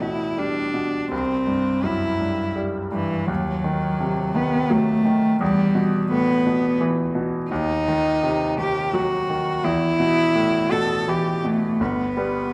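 Romantic classical duo in E minor at 84 BPM in 3/4, yearning and elegiac, where a rich, close-miked cello sings a smooth, vibrato-laden bowed melody up front over bright, polished grand piano accompaniment with brilliant, short-sustained tone, the flexible rubato pulse and harmonies moving from E minor through a diminished chord to a closing G, all in a 12.5-second fragment cut from a longer piece and bathed in the lingering reverb of a recital hall.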